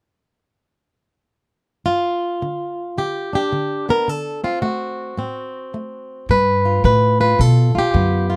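A dark, warm booth sound frames this rollicking, soulful acoustic country blues cut from a longer piece, where a boxy, old-stringed plugged-in acoustic guitar fingerpicks a swung melody up front from 1.9 seconds over G7 and D7 changes, then takes a solo at 6.3 seconds as a woody pizzicato upright bass joins it in the foreground until 8.4 seconds.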